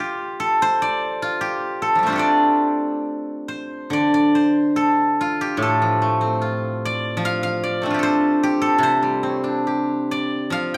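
Longing and elegant, this short cut from a longer Chinese traditional piece features a solo steel-string zither played with fingerpicks in the D yu mode, moving freely in rubato around 69-76 BPM in 2/4 and tuned slightly high at A4 = 441 Hz. The silvery, ringing instrument sits up front and spans from A2 to G5, with a new section beginning at 3.9 seconds and running to 10.8 seconds. A lush recital hall reverb of about 1.7 seconds, captured in a church or concert hall, surrounds the plucked notes.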